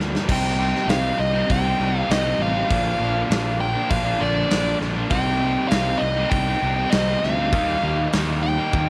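Classic rock with a brooding, driving mood, cut from a longer piece, built on a big acoustic drum kit with punchy kick, bright cymbals and fills at 0.0 and 8.7 seconds, plus a fuzzy, overdriven fingered bass sitting up front. Two picked guitars play a riff in the background, one crunchy with spring reverb and the other bright, distorted and compressed, while a very quiet tonewheel organ holds full, lightly overdriven chords through a slow rotary speaker. From 0.3 seconds a nasal lead guitar with a parked wah carries the melody up front, overdriven and touched with slapback echo, over chords moving from Cm7 to Bb, back to Cm7 and on to Eb, all in a small room.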